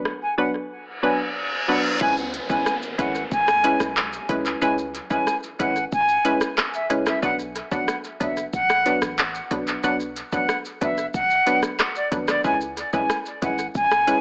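A hollow, bouncy square-wave pluck opens this sultry, hypnotic dancehall cut, its detuned tone thickened by chorus and pumping against the beat as it moves between Bm and C#m7. An up-front, electronic afro-pop kit joins almost at once, with a deep kick, smooth hi-hats, handclaps, rim clicks, shaker and crash cymbal, all touched by tape echo. A jazz flute carries the melody up high, airy and expressive, with a crisp chiff and vibrato, touched by tape echo and sounding distant despite sitting forward. A reverse cymbal rises from 0.9 seconds, and the electronic reverse cymbal and downlifter effects carry on until 7.2 seconds. From 2.0 seconds, a deep, boomy 808-style bass settles low in the background. The echo-heavy mix has a moderate spring reverb and an AM-radio character, and the recording is cut from a longer piece.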